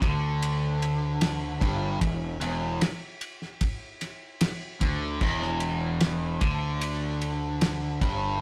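A rough rehearsal-room recording with tube saturation and light reverb frames this hypnotic, mysterious psychedelic rock excerpt, which sits on a single E minor chord throughout. A double-tracked, picked electric guitar riff, overdriven and swirling through a phaser, rides low alongside a round, punchy fuzz bass played with the fingers. With them, a damped 70s drum kit with a fat snare, tight kick and dark crash and ride cymbals sounds dry and rolled-off at the top, with all three parts up front until the drums stop at 8.2 seconds.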